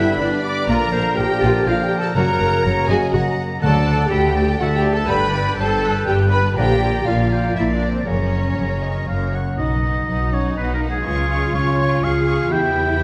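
Soaring and adventurous, this heroic film-score cue in 3/4 at 122 BPM sets a lush, vibrato-laden violin section on the melody above a rich second violin line, with bright clarinet, clear oboe and hollow flute adding further lines, an expressive viola section with portamento, mellow, distant French horns and tight trombone chords (the trombones dropping out at 8.2 s), ringing fingerpicked harp arpeggios and a smooth cello and focused double bass foundation, while timpani appear briefly at 3.6 s and the harmony moves into B lydian at 9.6 s, all in a wet scoring-stage reverb.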